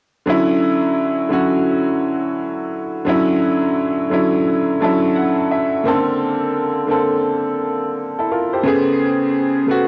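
A woody, slightly detuned upright piano sits up front in this dreamy, nostalgic hip hop fragment, cut from a longer piece. Its worn tone passes through a low-pass filter and cassette tape coloring, with long sustain that lets each chord ring into a moderate studio reverb. The piano plays accompaniment in a swung sixteenth-note feel, moving from Dmaj9 to Bbmaj9 at 5.8 seconds and on to Amaj9 at 8.6 seconds. A brief piano fill runs from 4.5 seconds, just before the harmony shifts. The whole has the open, homespun character of a home recording on cassette.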